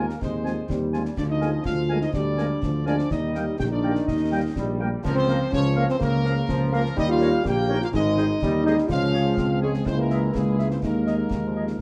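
A straight two-beat march pulse drives this rousing, festive wind-band passage cut from a longer piece, with concert snare, bass drum and dark-toned clash cymbals entering close and acoustic at 0.1 s. A bright, present trumpet section carries the melody while a dark euphonium with vibrato and a mellow woodwind section with light vibrato supply second lines. Beneath them, a shadowy French horn section accompanies, a distant, roomy trombone section holds sustained chords, and an up-front solo tuba with a smooth top anchors the bass in a dusky production with moderate large-studio reverb.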